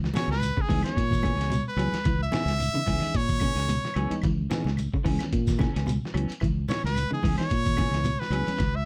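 A driving, hypnotic afrobeat groove at 110 BPM in 4/4 with a 16th-note swing rides on a gritty, compressed sampler-style drum kit with thumpy kick and fat snare, a punchy fingered electric bass, quiet high-tuned congas, a grainy distant shekere and woody claves in the background, while a twangy, slightly broken-up electric guitar plays arpeggios through lush chorus, a hollow-bodied semi-hollow guitar adds stabs with harmonic tremolo, and a reedy electric piano comps softly beneath a brilliant, forceful trumpet that solos up front with vibrato over a C#m7 chord in C# dorian, all in a dry room across this 8.9-second excerpt from a longer piece.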